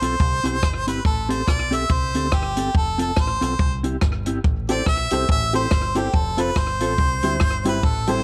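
A bright, up-front harmonica carries the melody with vibrato and scooped notes in this energetic, driving ska excerpt in A minor at 141 BPM, swinging lightly over a chord cycle of C, Am7 and F. A mellow, clean electric guitar with tremolo, a deep, round dub bass and a compact, dry cocktail kit of hi-hat, punchy kick and rim click play throughout, while a dark, woody, slightly detuned upright piano adds short, boxy stabs from 4.7 seconds. Light reverb and vinyl crackle color the recording.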